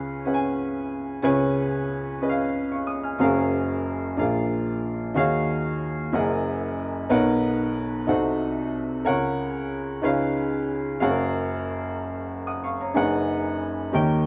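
A woody upright piano plays alone from the start, up front in a moderate stone-room reverb with long, natural sustain, opening on a C#7 before settling into a soulful, jubilant gospel passage in F# major at a slow 61 BPM in a straight 6/8. Its rich harmony moves through F#maj9, D#m11, F#13, Bmaj9 and a Cdim7 at 8.1 seconds, reaching F#maj7 and closing on B69/F#, across a range from deep bass to bright treble. The live, single-room sound and tuning at A4 = 436 Hz give this 14.3-second fragment of a longer piece an intimate, churchy glow.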